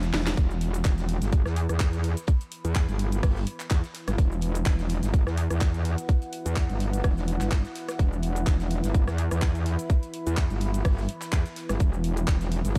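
A swung 126 BPM groove in 4/4 opens with a brief drum fill before the tight, up-front electronic kick lands at 0.4 seconds, joined by a garage kit of cracking snare, handclaps, rim clicks, shaker and warm hats, with a very quiet, dry 70s kit adding a fat, rolled-off snare and hi-hat underneath. This bouncy, swaggering bass house cut in E minor is driven by an aggressive, metallic FM wobble bass, distorted and compressed with chorus and overdrive, pumping against the kick in the low register. From 2.2 seconds a deep, moody sawtooth pad with a sub octave, slow attack and reverb sustains dark chords higher up, also pumping, all set in a small, dark room sound.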